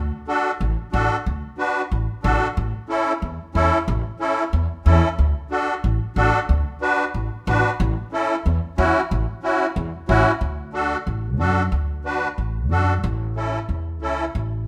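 Latin cumbia at 184 BPM in 4/4 with a straight feel, sunny and festive in D major, cut from a longer piece. An upright bass carries the low end from the start, its pizzicato gut strings sounding woody and thumpy, sitting up front in the A1 to F#2 range. A musette accordion joins at 0.3 seconds as accompaniment, reedy and shimmering from its wet musette tuning, with an airy quality in the C#4 to B4 range, also placed up front. The harmony alternates between D and A throughout, moving from a first section into a second at 10.4 seconds. A moderate large-studio reverb gives the pair a sense of space, and the accordion falls away at 14.3 seconds as the bass plays on to the end.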